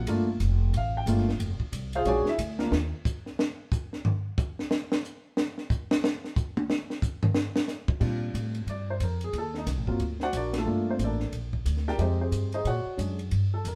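A baby grand piano and woody pizzicato upright bass open this relaxed, sophisticated jazz piano trio excerpt in Bb major at a swinging 181 BPM over Gm9 and Bb7alt, then drop out around 2.7 seconds for a drum solo on a compact cocktail kit with a dark, smooth sound, high-tuned snare, punchy kick and rolled-off top, before piano and bass return around 8.0 seconds on a Bb69 chord and the band hits an accent at 10.5 seconds, all three sitting up front in the light reverb of a live room.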